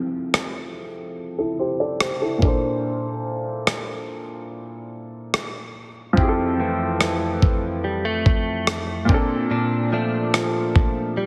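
Contemporary R&B at 72 BPM in F major, smooth and dreamy, in which a clear, worn grand piano with short sustain plays accompaniment over Fmaj7 and Bbmaj7 chords while a gritty, sampler-style drum kit of thumpy kick and rim click, re-recorded in a large room, sits up front. A picked, clean electric guitar with analog chorus and delay sounds briefly at the very start and returns with arpeggios from 6.2 s, and a filter sweep runs through this brief cut from a longer piece, all under light reverb and a heavily compressed radio sound.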